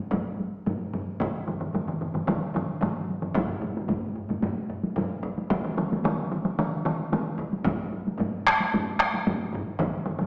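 Japanese traditional taiko drum music, driving and powerful at 112 BPM in a straight 4/4, this brief cut from a longer piece layers four taiko ensemble parts, three struck with heavy or hard sticks up front from 0.1 s and a fourth, hard-sticked part joining at 1.2 s, before the music shifts into a new section at 3.4 s, all set in a reverberant church or concert-hall space with a small-speaker sound.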